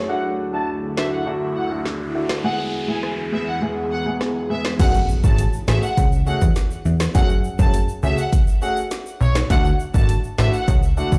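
A straight 4/4 dancehall groove at 102 BPM in F# minor sets a tough, hypnotic mood in this cut from a longer piece, with an electronic afro-pop kit arriving at 1.0 s and putting its deep kick, woody snare and metallic hats up front. A polished baby grand piano and an ethereal, detuned pad with sidechain pumping open over Dadd9 and E chords, while a distant, intense violin section carries the melody with vibrato and digital delay, and an electronic noise sweep leads to an impact at 4.8 s. There the pad stops and a punchy, funky sawtooth bass enters up front, joined by a soft-handed egg shaker and timbales in the background, with the mix sitting in a big, bare-sounding space of large studio reverb.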